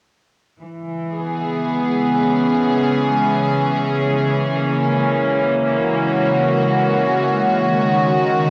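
The rich, softly bowed string section sits up front with sustained chords in C# dorian from 0.6 seconds, joined at 1.5 seconds by a calm, warbling organ-like drone with chorus and its own reverb, drifting in free time through C#m7, F#7 and a rootless B6 in this reflective, spacious ambient fragment, heard through a wet spring reverb on a cassette home recording.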